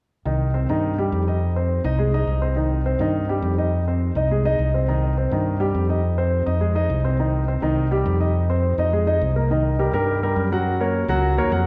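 Drenched in a scoring-stage reverb with a two-second tail, this short cut from a longer Afro-Cuban jazz piece has the resonant sound of a church or concert hall. It moves at a brisk 208 BPM in 4/4 with a straight feel, sitting in C minor with a driving, fiery mood. A concert grand piano carries the accompaniment from 0.3 to 11.7 seconds between Eb3 and F#5; its natural tone is warm, up front and full of deep bass. A fingered electric bass holds the low end between C2 and G2 across the same span, with a direct, amped and up-front electric sound. The harmony alternates between Cm and Fm7 through the opening section, then shifts to Cm7 and F#6 when a new section arrives at 9.5 seconds.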